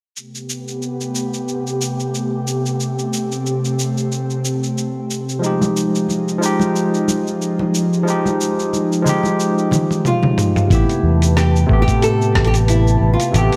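An airy, breathy pad with chorus and 12-bit sampler grit opens this wistful, relaxed sunset chillout cut in A minor at 91 BPM, over a dusty, overdriven sampler-style kit of cabasa, hi-hat, rim click and toms, before a barky tine electric piano with delay and bright vintage congas arrive near 5.4 seconds as the harmony moves from Am9 to Fm9. During a drum fill, a fingerpicked nylon-string guitar melody enters at 10.1 seconds, and a round, punchy fingered bass and a thumpy electronic kick join at 10.7 seconds in light digital ambience.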